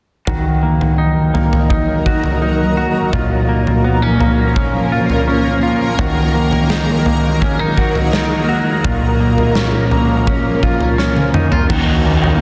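A haunting, hazy stretch of dream pop opens at 0.3 seconds with a clean, hollow-bodied semi-hollow electric guitar fingering arpeggios up front, coated in subtle chorus and digital delay, alongside a huge arena drum kit with a punchy kick, bright cymbals and a medium-tuned snare in a pumping room. A shimmering, ethereal pad fades in slowly from 1.1 seconds, its detuned unison layers and octave-up shimmer held as sustained chords with chorus, phaser and a granular sheen. The harmony moves between Ebm and Bbm at an unhurried pace, and a drum fill arrives at 11.0 seconds. At 11.7 seconds a crunchy, overdriven picked guitar with harmonic tremolo and analog chorus joins, along with a dark, round, foam-muted fingered bass sitting in the background as the chords return to Ebm. A lush hall reverb surrounds the whole, and the dense, heavily limited master keeps this short fragment of a longer piece full and forward.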